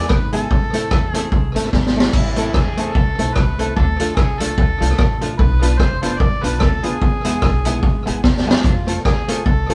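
A live, small-room sound with a moderate reverb frames this short ska excerpt, cut from a longer piece, moving at 148 BPM in 4/4 with a swung eighth-note feel in A harmonic minor. An overdriven harmonica carries the melody throughout, gritty and punchy with amplified bite and tongue slaps. Up front, a street-band drum kit pushes the energetic, driving mood with a boomy kick, a high-tuned snare, rim clicks, hi-hat and crash, its top end rolled off, and fills land at 1.7 and 8.2 seconds. Further back, a clean, compressed hollow-body jazz guitar plays accompaniment through a tape echo, while a detuned, jangly honky-tonk upright piano adds short, bright stabs. A woody, thumpy upright bass, played pizzicato on steel strings, sits dark in the background as the chords move from E to Am, Dm, Bdim and back to E before closing on F.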